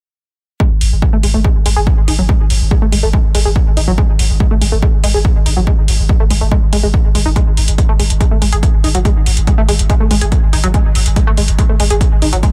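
Driving peak-time techno at 142 BPM in a straight 4/4, hypnotic and industrial in mood, cut from a longer piece and staying close and dry with little reverb. A punchy electronic kick and metallic hi-hats, both layered and re-recorded in a small room, carry the groove beneath a deep, saturated sub bass pinned on G#1 with overdrive, a low-pass filter and sidechain pumping. On top, a tight sequenced synth riff of detuned sawtooth and pulse waves with a filtered pluck, chorus, overdrive, dub echo and pumping runs from 0.6 to 12.5 seconds under a continuous filter sweep.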